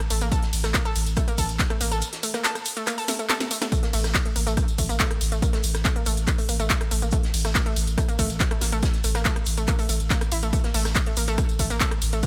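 A layered, up-front techno drum kit opens this dark, industrial peak-time techno cut, its cracking snare cutting through as its smooth hats, claps, rim clicks, ride and tambourine pump against the sidechain, with a punchy, tape-toned electronic kick joining at 0.3 seconds. A deep, overdriven sine sub bass holds a single low note beneath a bright, nasal, wave-folded analog pluck riff treated with chorus, tube saturation and digital delay, both pumping against the sidechain. A gritty, very quiet acoustic kit of fat snare, hi-hat and shaker sits in the background, and a drum fill at 3.1 seconds briefly interrupts the driving, straight groove in this dry mix.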